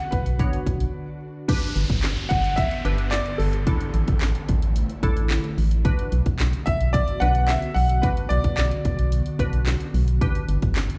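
Heard through a venue's PA with club reverb, this driving, bittersweet dance-pop excerpt in B minor at 110 BPM sets a clear, worn concert grand piano melody with digital delay and slapback echo up front over punchy, overdriven house drums with a cracking snare and bright hats, a hollow, dark organ-like FM bass that pumps with the sidechain, a crystalline, warbling wavetable pluck, an ethereal airy pad treated with phaser and ensemble chorus, and a downlifter arriving at 1.5 seconds, as the chords move from Bm through G and Asus4 and the piano drops out at 9.1 seconds.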